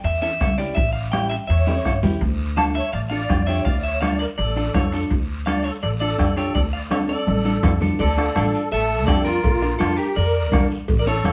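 A woody, thumpy upright bass sits up front in this passionate, driving cumbia, its pizzicato steel strings anchoring the groove in straight 4/4 from the very start. Above it, a bright, twangy electric guitar at the edge of break-up carries the melody, picked and bathed in spring reverb. A dark, compressed clean electric guitar supplies picked accompaniment, and a reedy musette accordion with shimmering wet tuning joins at 1.5 s as a close-miked, dry second line. The percussion bed blends a soft-beater bombo with a vintage, band-limited thud, ringing medium-tuned congas and metal-shell timbales with cowbell set in the background, plus a faint, raspy guiro. The harmony moves from A7 to Dm, fills punctuate the rhythm, and a new section arrives at 8.0 s, turning to Bb at 9.4 s. The band sounds as if playing live together in one room, wrapped in a moist studio reverb, and the clip is cut from a longer piece.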